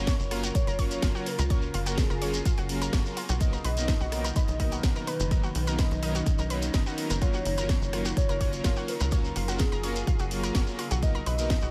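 Uplifting and hopeful, this progressive house passage moves in a straight feel, with chords alternating between F#maj7 and Bmaj7. From 0.1 s, a punchy electronic kick sits up front alongside a house drum kit with a cracking snare, rim click and warm hi-hats that pump against the kick, plus a grainy acoustic shekere heard in a small room. Underneath, a tight, nasal sequencer bass drives the low end with a fast, decaying filter pluck, while an evolving wavetable pad morphs through sustained chords, bathed in chorus and its own reverb. A smooth, airy supersaw adds mellow stabs with analog delay, and a round, detuned analog pluck traces bright arpeggios. Set back in the mix, a velvety synth lead carries the melody with vibrato and chorus, shadowed by a very quiet, pure FM bell with a gentle phaser as a second line, all under a light reverb.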